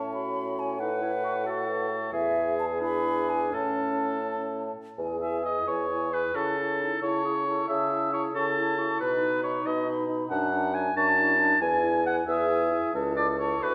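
Set in a wet recital hall, this cheerful, graceful excerpt of a quick classical-period wind quintet movement sways in a lilting 6/8 with a rubato feel. A pure, hollow flute carries the melody with vibrato, close to the ear, while a warm, up-front oboe sings the second line above a mellow bassoon bass touched with light vibrato. A clear clarinet and a dark, smooth-topped French horn fill in the accompaniment from the background as the music moves into a new section at 5.0 seconds.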